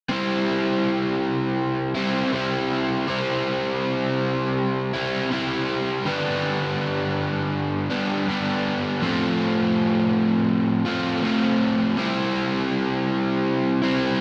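An overdriven electric guitar plays alone, up front and double-tracked, its picked tone dark and compressed, carrying this short rock excerpt from 0.1 to 14.2 seconds. The mood is euphoric and soaring, set at a steady 81 BPM in 4/4 with a straight feel in C major. Spring reverb and digital delay color the guitar as it moves between G2 and F4, while a huge ambient space with a long 5.8-second decay surrounds it. The harmony travels from C to G, then to F over A, and returns to C as a new section begins at 12.0 seconds. The production leans dark and warm, lending the solo line a mellow, shadowed presence.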